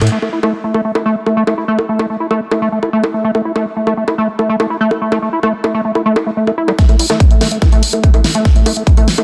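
Hypnotic and intense, this psychedelic trance excerpt at 144 BPM rides a squelchy, resonant square-wave acid bass riff up front, its filter sweep, chorus, tape echo and sidechain pumping set against a big-room dance drum kit of bongos, hi-hat and a huge snare in small room ambience, until a punchy electronic kick drum arrives at 6.8 seconds alongside a drum fill and build-up, all captured in a dense, heavily limited modern master with light reverb.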